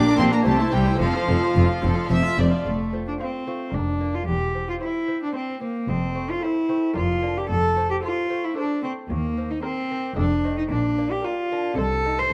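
A solo cello with a rich, reedy gut-string tone and light vibrato sits up front, carrying the melody from F3 to C5 in this festive, brilliant baroque-style concerto movement in 3/4, cut from a longer piece. Around it, period-style chamber strings play: violin sections share a melody and a smooth-topped second line, a warm viola section fills in the background, and cello and double bass sections enter at 0.2 seconds to anchor the bass. A delicate, fingerpicked lute with double strings adds quiet accompaniment, all heard through close, detailed microphones in a recital hall with moderate reverb, as the harmony moves toward Bb major from 9.1 seconds.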